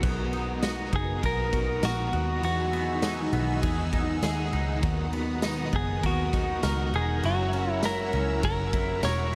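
An echo-heavy mix with light studio reverb frames this floating, blissful dream pop passage, cut from a longer piece. A raw garage drum kit in a bright stone room supplies punchy kick, medium-tuned snare, crash and ride cymbals and tambourine, its saturated, gritty sound rolled off at the top and touched by tape echo, while a dark, round, foam-muted picked bass sits prominently beneath. A clean, twangy electric guitar plays arpeggios through analog chorus and tape echo, and an overdriven guitar with tremolo and subtle chorus adds accompaniment in the background. A vintage string machine cello patch holds sustained chords, mellow and evolving, with a slow attack, sawtooth body and ensemble chorus. From 1.0 s a second picked guitar, compressed and up front with its own tape echo, carries the melody over chords moving from Bmaj7 to Emaj9, back to Bmaj7 and on to F#7.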